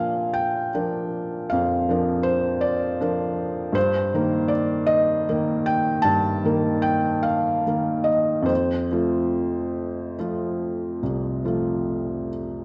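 A felt-muted upright piano sits up front in a wet recital hall, its soft, mellow tone carrying audible action noise and a vintage, intimate character. This tender, dreamy romantic nocturne moves in a rubato 12/8 at about 46-55 BPM in Bb major, ranging from C2 to A5 and passing from Bb to Eb/G at 3.8 seconds and on to F at 8.5 seconds. The 12.6-second passage is cut from a longer piece.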